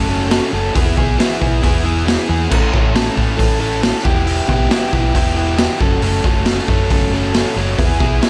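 Indie rock at 136 BPM in a straight 4/4, upbeat and carefree, this short clip from a longer piece pairs an overdriven, double-tracked, compressed electric guitar riff sitting up front with a round, hollow-body fingered electric bass, while a raw garage drum kit joins at 0.3 s with a boomy kick, dark cymbals and a saturated, gritty small-room pump, set in light reverb as the chords move from F#m through E, A and Em.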